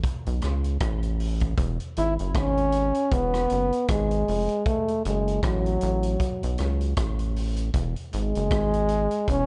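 A breathy, intimate trombone with light vibrato and tape echo carries the melody from 2.0 seconds in this sunny, uplifting roots reggae excerpt at 78 BPM in E major, riding over a rubbery, hollow square-wave bass and a vintage drum kit of hi-hat, punchy kick and rim click with 12-bit sampler grit, as the harmony moves between F#m and E in an echo-heavy mix with a rolled-off top and light studio reverb.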